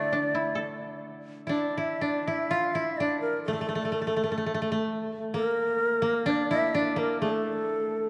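Japanese traditional chamber music, solitary and austere, moving in a slow, rubato 2/4 through this brief excerpt cut from a longer piece. A breathy bamboo shakuhachi carries the melody with vibrato and a tongued chiff, while one woody, up-front koto plucked with fingerpicks traces a second line throughout and another koto adds dry accompaniment until 2.5 seconds. The dark production sits in a wet church reverb with a long 3.6-second tail.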